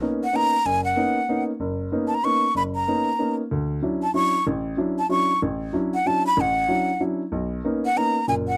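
A breathy metal jazz flute with vibrato, a soft attack and lifted highs carries the unsteady, up-front melody from 0.2 seconds over a warm, natural baby grand piano accompaniment in this open, hypnotic jazz waltz fragment in B major at 189 BPM with a swung feel, moving from Bmaj9 to Dmaj9 and back to Bmaj9 in a dry, close 1970s-style studio sound.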